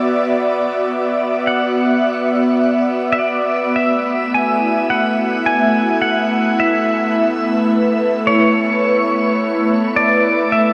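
Bathed in a deep shimmer reverb, this reflective, melancholic ambient fragment from a longer piece sets a twangy, bright pedal steel guitar melody with delay up front, fading in across the full 10.7 seconds, over a breathy, detuned pad of sustained chords that carries chorus, phaser and a filter sweep, while a nasal, tense bowed-like drone with vibrato sits in the background as the harmony moves from Bm to A at 3.8 seconds.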